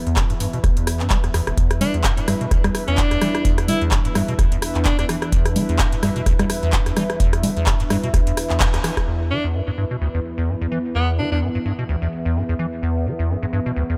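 Trippy and raw, this 128 BPM acid house cut in E minor pentatonic sets a squelchy, resonant square-wave acid bass with filter sweeps against two warbling, nostalgic lo-fi pads, one of them fading in behind it, while a booming analog drum machine with metallic hats, congas, handclaps and rim click rides over an overdriven deep kick until 9.1 seconds, and an edgy, punchy alto saxophone solo with scooped notes and delay cuts through at 1.8 and again at 9.3 seconds.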